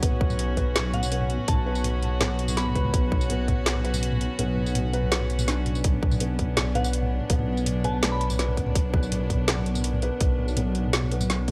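A heavy half-time drum and bass groove drives this tense excerpt, built on a tight, up-front electronic kick that stops at 3.6 seconds and returns at 5.8 seconds. Around it, a layered electronic drum kit adds a woody snare, metallic hi-hats, tambourine and toms, with a small-room character. Beneath the beat, a dark detuned saw bass rumbles deep and up front, its unison voices beating against each other. A felt-muted upright piano plays mellow, intimate arpeggios with audible action noise and a dub echo, while a distant chamber string section holds soft, floating chords that pump with sidechain. A gentle FM synth bell, chorused and echoed, places brief melodic phrases in the background, and a very quiet, eerie inharmonic drone hovers throughout, all within a light digital reverb over a B minor added-ninth chord.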